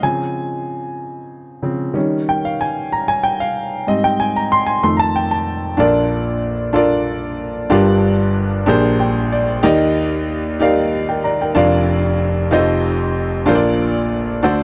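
A clear concert grand piano opens alone, moving through rich seventh chords from Dbmaj7 to Eb7 and on toward F7 before settling into Bb major at 5.8 seconds. This is a solo gospel piece in a slow 6/8 at 62 beats per minute, with a straight feel and an uplifting, hopeful mood. The piano sits up front with a natural tone and a deep bass, its range reaching from F1 up to C6. A short fill at 8.7 seconds, over a Bb13 chord, leads into Ebmaj7, and the harmony then passes through Bb/F and F7 to land on Bbmaj7. Light reverb gives the instrument a gentle sense of space in this fragment cut from a longer performance.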